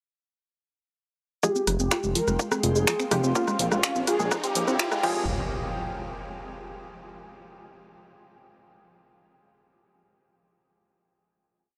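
Melancholic and dark, this short melodic techno piece builds from 1.4 seconds: an overdriven four-on-the-floor kick sits behind a punchy, up-front analog drum machine of shaker, snaps, rim clicks, hats and crash, while a rumbling detuned saw bass gallops in sixteenths under sidechain pumping. A tight, nasal sequenced synth runs a 12-step loop that drifts against the bar, a smooth, warbling portamento lead with vibrato repeats its riff, a muted dub chord stab pushes syncopated close-voiced chords, and an evolving wavetable pad drifts in over Fmadd9 and Bbm, with filter sweeps on the pad and arpeggio lifting the build. A background riser from 2.9 seconds leads to a final impact at 5.3 seconds that rings out in a huge ambient reverb.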